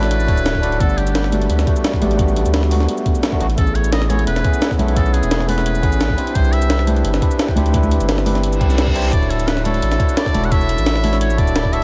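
Liquid drum and bass with a lush, uplifting mood, cut from a longer piece: a barky, overdriven tine electric piano with tape echo sits up front over a deep, thick saturated sub bass, moving through rich ninth chords. A breathy, whispered trumpet with a metal mute plays a soft, intimate jazz-style melody, also treated with tape echo, while a gritty, pitched-up sampler-style breakbeat kit with hi-hat, shaker and snare plays alongside a thumpy electronic kick, and bright congas with hard hands sit in the background from 1.3 seconds. A faint electronic reverse cymbal rises into the return of the opening chord at 9.1 seconds, all within a light reverb and digital ambience.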